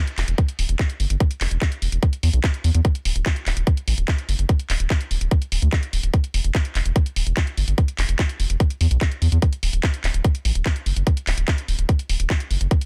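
Driving and hypnotic, this short psychedelic trance excerpt runs at 146 BPM in a straight 4/4, with its tuning set slightly above standard at A4 = 441 Hz. An electronic kick drum sits up front, tight and layered, giving the groove its steady spine from 0.4 seconds onward. Beneath it, a round analog bass moves between D1 and E2, its deep, nasal tone blending triangle and sine shapes with a filter pluck, a fast attack and a dark sustain. A garage drum kit adds handclaps and warm hi-hats at a much lower level, and both drum parts carry the character of being re-recorded in a small room. The mix is dry, with little reverb, and the master is dense and heavily limited.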